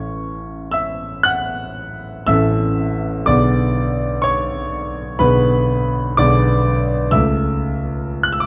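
A warm, natural grand piano sits up front alone in this short, tender and nostalgic passage from a longer romantic classical nocturne, moving with a rubato feel at 56-64 BPM in 4/4 and A major through harmonies from A to G#dim/B and on to A/C#, its range spanning A1 to F#6 while a moderate stone-room reverb and a dark, warm production lend the sound a wistful glow.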